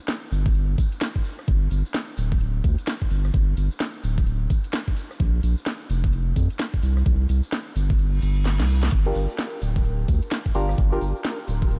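A skippy, soulful two-step UK garage groove in G minor at 129 BPM opens with a swung garage kit of cracking snare, rim click and metallic hats, alongside a grainy, bright egg shaker sitting in the background, before a thick, saturated sine sub bass and a knocking, tape-warm electronic kick push up front. The kick drops out at 8.0 seconds as a reverse cymbal and a drum fill lead into a dark, wave-folded chord stab at 9.1 seconds, its soft decaying tones coloured by chorus, phaser and analog delay. Chords move from G5 through Bb5 and C5 to Gm7 in a dry mix, and this short excerpt is cut from a longer piece.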